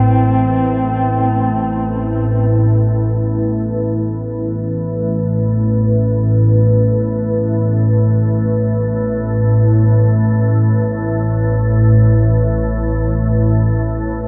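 Dark ambient drone in free time and A minor, tuned slightly low, this cut from a longer piece feels cavernous and unsettling. A mellow duduk carries the melody for the first 2.9 seconds, its smooth top marked by vibrato and scooped notes in a folk style, with dub echo trailing behind it. Underneath, an organ-like drone sits up front across the whole excerpt, a calm, wave-folded sine tone thickened by ensemble chorus and built-in reverb. A deep, moody pad holds sustained chords throughout, opening on Asus2, its detuned sawtooth layers warbling with a vintage character, chorus and a sub octave, and it fades out from 3.8 seconds to the close at 14.3. Moderate spring reverb and an echo-heavy mix, with the grain of cassette tape, give the piece a hazy, cave-like depth.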